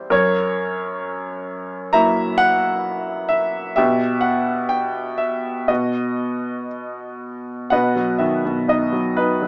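A small-speaker sound with light reverb frames this brief fragment cut from a longer piece, a melancholic, reflective work of lyrical classical solo piano played with rubato. The upright piano sits up front, clear and woody, slightly detuned, with audible action noise and long sustain lending it an intimate presence. It moves from an F#7 chord through Emadd9/B to a B chord near 5.7 seconds, shifting into a new section at 7.7 seconds before the fragment ends at 9.5 seconds.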